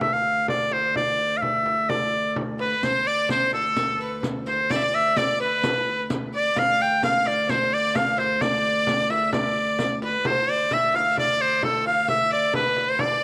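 An edgy shawm leads this mysterious, driving medieval dance, playing a solo melody up front with folk-style vibrato. Beneath it, a warm, fretted viola da gamba holds a ringing low D drone with a soft attack and an intimate, close sound. A small frame drum played with hard hands in a live room keeps the straight 2/4 pulse at 129 BPM, and the tempo speeds up across the passage. A bright, earthy fiddle with an airy bow enters in the background at 2.6 seconds to add a second line. A vintage-sounding riq with dark jingles joins at 2.8 seconds and stops at 10.1 seconds. Set in D dorian with A tuned to 441 Hz and bathed in a moderate plate reverb, the passage is cut from a longer piece.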